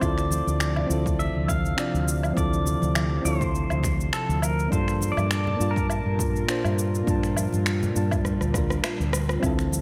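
Sunset chillout with a wistful mood, light swing and a bright 1980s-style digital sheen, moving from Dm9 to Gm9. A clean, compressed pedal steel guitar carries the melody with slide and volume swells. Beneath it sit soft electric-piano-like synth keys through chorus, filter and digital delay, an airy, breathy pad warbling in the background, and a dark, round fretless bass that sits loudest in the mix. A punchy, overdriven electronic kick joins layered electronic woodblock, shaker, finger snaps and rim click washed in gated reverb, very quiet ringing congas enter at 0.3 seconds, a drum fill arrives at 8.3 seconds, and a full-bodied pluck arpeggio surfaces at 9.4 seconds before the excerpt cuts off.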